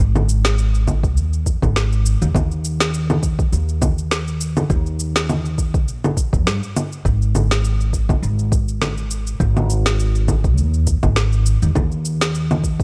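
Organic downtempo at 102 BPM in 4/4, this hypnotic, mystical excerpt from a longer piece sways on a 55% swing in the sixteenths, tuned to A4 = 443 Hz. A dark, pizzicato upright bass with steel strings sits up front from the start, pulsing with sidechain pumping. Electronic congas, cabasa and a woody, tape-warm snare join at 0.2 seconds, followed at 0.9 seconds by a soft electronic kick re-recorded in a small room, all in a dry mix.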